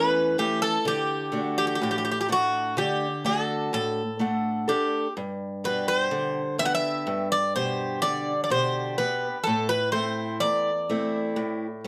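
A bright, metallic Greek bouzouki carries the tender melody up front, its picked double strings, some doubled at the octave, ringing between F#4 and F#5 across this short excerpt of Greek folk music. Beside it, an old ladder-braced acoustic guitar provides picked, boxy accompaniment that reaches down to E2. Set in G major at 126 BPM in a straight 9/8, the passage moves through A, D, G and A minor in a moderate studio reverb.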